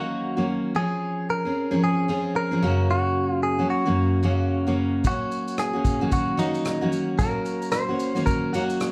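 Acoustic pop with a heartfelt, carefree swing, where a bright, twangy clean electric guitar carries the melody over a plate reverb while a full-bodied picked steel-string acoustic guitar picks out the accompaniment through Ebm7, Dbmaj7/F and Gb changes, and a dark vintage brush kit with punchy kick, rim click and shaker joins at 5.0 s, all set further back in a wet studio ambience in this short cut from a longer piece.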